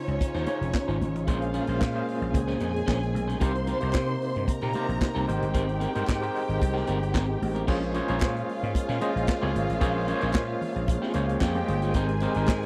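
Disco in Bb dorian at 112 BPM, this short cut from a longer piece has a glamorous, sultry air and a dry, close 1970s studio sound. A punchy vintage drum kit sits up front with a high-tuned snare, crash cymbal, hi-hat and handclaps, joined by a growly, amped slap bass that carries the low end. An overdriven tine electric piano, barky and gritty through a combo amp with fast tremolo, drives the accompaniment alongside a twangy, slightly broken-up electric guitar bathed in spring reverb. A rich, bowed string section with soft attack and expressive vibrato supplies a second line, while a fat tonewheel organ holds very quiet sustained chords through a slow rotary speaker with audible key click. Damped, high-tuned congas murmur in the background, and a crisp, band-limited group handclap slips in faintly from 3.9 seconds as the chords move from Dbmaj9 through Bbm9, Cm7 and Abmaj9, then shift to Bbm7 at 7.7 seconds and Abmaj7 at 11.9 seconds.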